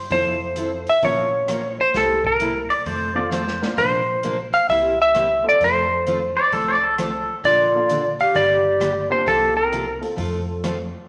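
A clean, slide-played lap steel carries the melody up front from the start of this swinging, playful western swing excerpt, backed by a jangly, detuned vintage honky-tonk piano, a bright, full-bodied picked acoustic guitar, a thumpy pizzicato upright bass and an airy, polished big-band kit with punchy kick, snare, rim click and hi-hat. At 2.7 seconds a compressed pedal steel played with fingerpicks adds a second line with volume swells, and from 7.5 seconds a distant, raspy clarinet takes up that role with growling subtone, light vibrato and scooped notes. A wet, large studio reverb sets the band in a spacious room.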